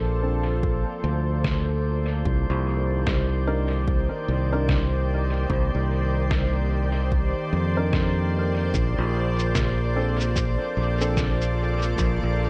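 A soft, organ-like pad opens this hazy, meditative ambient dub excerpt, holding pure, slow-blooming chords thickened by ensemble chorus and its own reverb, while a growly, up-front fingered electric bass and a faint, glassy harmonics texture with drifting overtones sound beneath and above it. A dark, woody upright piano, worn and slightly detuned with audible action noise, drops in short stabs from 0.2 seconds, trailing dub echo from the background. A deep, overdriven electronic kick arrives at 0.6 seconds, and a fat, muffled, pitched-down snare paired with cabasa follows at 1.4 seconds, tape-tinged, compressed and sent into dub echo of its own. The groove sits in a relaxed 4/4 with a gentle swing on the sixteenths, and the harmony rests on Bbmaj9 before shifting to Cm9 and returning. Light reverb and a small-room character on the drums give the whole a close, smoky atmosphere.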